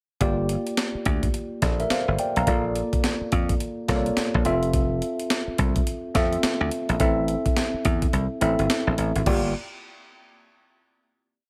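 A dry, up-front mix sits in a digital ambience on this short, complete new jack swing piece in G dorian, moving at 106 BPM in 4/4 with a hard 16th-note swing and a confident, slick mood. A compressed, gritty sampler-style breakbeat kit drives a drum-machine beat with a thumpy kick, a medium-tuned snare, hi-hat and crash cymbal. A punchy, foam-muted electric slap bass, thumbed and bright, bounces through a swung synth-funk line full of muted ghost notes and chromatic approach notes. A worn, slightly out-of-tune tine electric piano with a mellow tone pushes drop-2 chords through Gm7, Bbmaj7, Fmaj7 and Am, adding grace notes and short fills. The kick drops out at 8.1 seconds, and the band stops near 9.5 seconds as the closing Gm7, arriving at 9.3 seconds, rings out to 11.5 seconds.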